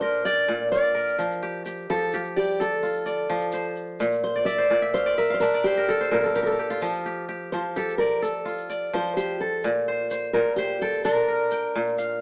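Ringing, crisp kora arpeggios sit up front alongside a fingerpicked steel-string acoustic guitar melody with fresh strings and audible finger squeak, which opens this flowing, joyful West African string and xylophone music excerpt in F major at 85 BPM in a straight 12/8 before the kora adds a fill from 4.3 to 6.8 seconds over a grainy, close tube shaker, all captured live in a moderate stone room with a small-speaker sound.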